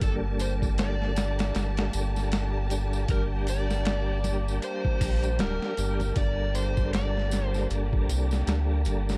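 A swung, unhurried 78 BPM boom bap beat from a gritty, overdriven sampler-style kit with a thumpy kick drives this smoky, cinematic trip hop piece in G minor on a Gmadd9 chord, as a deep, round analog bass sits up front beneath a smooth tonewheel organ with fast rotary speaker, tremolo and 12-bit sampler grit, a lush, distant violin section holds sustained chords, bright saturated tambourine and congas add percussion, and an overdriven slide guitar carries the melody through dub echo until it stops at 7.7 seconds, all within a dark digital ambience.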